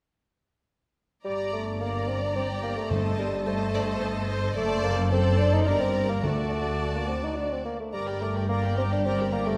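This stormy, urgent passage from a longer classical-period orchestral movement in triple metre opens at 1.2 seconds with a warm, lush violin section on the second line and an up-front, dark bassoon with a smooth top and light vibrato. A moment later the viola section joins with expressive vibrato and touches of portamento, while cellos and double basses anchor the low end: the cellos woody and set back, the basses soft in attack with their own portamento. The melody soon arrives in a chamber violin section played sul tasto, its intimate, gentle tone sitting in the background. Timpani struck with medium mallets add close, dry accents at 2.9 and 6.2 seconds. The harmony passes through a half-diminished chord and a dominant seventh before returning home, and a scoring-stage reverb gives the orchestra a spacious, wet sheen.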